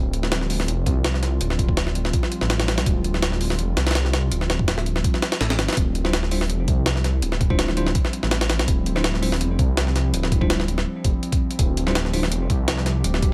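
A light reverb wraps this dark, atmospheric drum and bass excerpt, which sits in jungle territory and holds a single Dm11 chord throughout. Up front, a sampler-style drum kit sounds gritty and compressed, pitched up, with a thumpy kick, a high-tuned snare, hi-hat and a small room ambience around it. Equally forward, a detuned saw bass lays down a thick, menacing low end whose beating tone stays sustained under the drums. In the background, a warbly, lo-fi pad holds nostalgic sustained chords, dressed in chorus and its own reverb. At 6.0 seconds a bell-like tine electric piano enters with bright stabs, carrying 12-bit sampler grit and dub echo, and it stops at 12.2 seconds.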